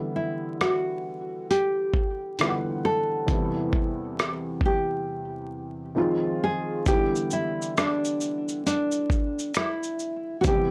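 A dry, gritty recording with transformer saturation, vinyl crackle and light reverb carries this hazy, nostalgic lo-fi hip hop excerpt in E minor at 67 BPM with a swung 4/4 feel, where a dark, woody upright piano with audible action noise and a slight detune plays chords from Em7 through Cmaj7/E and Fm7, a full-bodied fingerpicked nylon-string guitar sings the melody from 0.2 seconds, a compressed sampler-style drum kit with a thumpy kick, hi-hat, rim click and shaker sits up front from 0.6 seconds, and very quiet finger snaps appear at 7.8 seconds.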